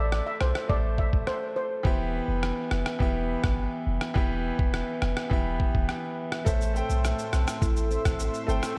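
A shimmering steel pan with delay opens this tough, sultry dancehall excerpt in A minor at 104 BPM alongside a brilliant, up-front concert grand piano and a deep, boomy 808-style bass, joined almost at once by a gritty, pitched-down trip hop drum kit with a thumpy kick, rim click and shaker, before a detuned sawtooth pad with chorus, tremolo and sidechain pumping, a fingerpicked nylon-string guitar with subtle chorus and delay, and soft background maracas enter at 6.5 seconds, all set in a dreamy mix soaked in lush hall reverb.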